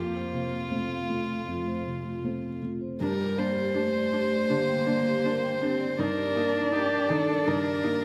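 A single violin carries the melody up front, its tone airy and intimate, played sul tasto with light vibrato and a soft attack. This fragile, longing piece of neoclassical piano and strings is in G minor at 80 BPM in 4/4, with a rubato feel. A close, woody cello with vibrato plays a second line beneath. A felt-muted upright piano adds mellow accompaniment with audible action noise, and a vibraphone played with soft mallets, motor off, rings out metallic arpeggios in the background. A distant viola, dark and bowed sul tasto, joins at 3.0 s as the chords move from F to Gm and then to Ebmaj7/G at 6.0 s. A church or concert hall's wet reverb surrounds the ensemble in this brief passage cut from a longer piece.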